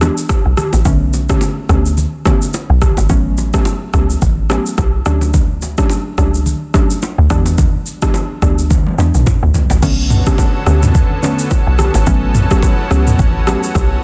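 Afrobeats with a hypnotic, smooth swing, cut from a longer piece, where a woody, punchy log drum bass and an overdriven deep house kit with a deep kick sit up front over a soft, dark chorused pluck and hard-handed bongos and congas in the background, with a drum fill at 8.7 seconds leading to a lush, bright unison pad that enters at 9.8 seconds to fill out the dense, dry mix.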